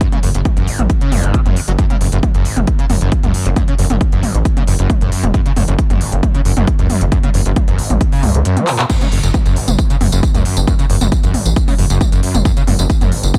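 A screaming, squelchy acid line leads this driving peak-time techno piece at 135 BPM in F# minor, its resonant sawtooth riff running from F#1 to F#3 with distortion, ensemble chorus, cassette-tape colour and sidechain pumping. Beneath it, an overdriven electronic kick hits heavy and up front, joined by a layered techno kit of smooth hi-hats, handclaps, tambourine, toms and crash cymbal, its hats, toms, percussion and cymbals pumping against the sidechain. A gritty driven synth bass enters at 0.2 seconds, a saturated, evolving blend of square, sawtooth, sync and sine tones moving between E1 and C#2 with its own pumping. The kick drops out at 8.5 seconds, a drum fill lands at 8.7, and the drop arrives at 8.9 seconds as the harmony moves off its F# minor chord. The mood is intense and hypnotic, set in a digital ambience, in this cut from a longer piece.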